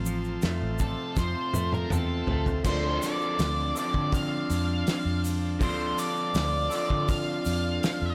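Dark and hypnotic, this short excerpt from a longer psychedelic rock piece moves at 81 BPM in a straight 4/4, shifting from an F chord to Dm7 at 2.7 seconds. An electric guitar through a small old amp sits up front with a slightly broken-up, picked riff colored by phaser, while a vintage muted fingered bass supplies a round, foam-muted low end. A buzzy combo organ holds sustained chords with light vibrato in the background, joined by a grainy, close egg shaker. The cloth-damped drum kit enters at 0.4 seconds with a thuddy, pumping small-room sound, fat snare, tight kick, dark cymbals and a rolled-off top, playing a fill from 1.2 to 2.7 seconds. An octave-fuzz lead guitar comes in at 0.8 seconds, its distorted melody trailed by analog delay, and studio reverb surrounds the mix.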